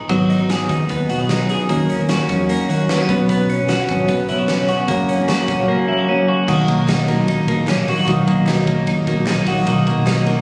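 A bright, twangy twelve-string electric guitar opens this jangly indie pop excerpt at 0.0 seconds, picking clean, compressed arpeggios up front in the mix with a touch of spring reverb. Almost at once a full-bodied, fingerpicked steel-string acoustic guitar joins with accompaniment, alongside a dark, round, foam-muted electric bass and a big rock drum kit with a punchy kick, fat snare, hi-hat, ride and crash in a stone-room sound. The mood is breezy and bright at 150 BPM in a straight 4/4, moving through G#m7, D#m7, Bsus2 and F# in B major before settling on Bmaj7 as a second section begins at 6.5 seconds. Very quiet, crisp group handclaps come in at 6.9 seconds and stay until 10.2 seconds. The whole track sits in a moderate echo-chamber and club reverb, heard as if captured on a phone in the room, with vinyl crackle, compression and lossy artefacts colouring the sound.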